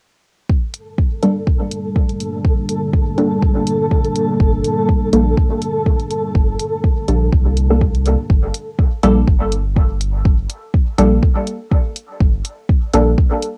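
Lightly reverberant and softened by a home cassette recording, this hazy, hypnotic dub techno piece moves at 123 BPM in 4/4, with a gentle 16th-note swing in G minor. A deep, layered electronic kick sits up front with a tape-warm weight, while an analog-toned electronic hi-hat ticks along quietly above it. Muted, detuned chord stabs with a filter pluck, phaser and dub echo also sit prominently, undergoing a filter sweep through the opening section, and beneath them a dark, moody pad of detuned sawtooth with a sub octave holds chorused, slow-blooming Gmadd9 chords that pump with the sidechain. A grainy, flickering granular texture drifts in the background with its own built-in reverb and mellow glow. A round, soft sub bass enters up front at 4.4 s, and at 8.3 s the harmony settles onto Gm as the pad and texture fall away, leaving the kick, hi-hat, stabs and bass to carry the groove.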